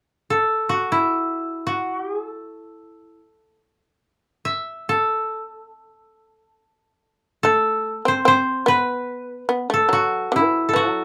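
A koto carries the melody from 0.3 seconds, its fingerpicked tone mellow, dry and woody, sitting up front in a light reverb. This is an austere, meditative passage of Japanese traditional music in free time, set in the kumoi mode on A and cut from a longer piece. The koto moves between E4 and E5 on its own through the opening stretch. At 7.4 seconds a fretless shamisen joins with a second line lower down, between E3 and C4, plectrum-plucked with a bright, percussive, buzzing edge. It sits a little beneath the koto in level, and both instruments play on together until the close at 11.0 seconds.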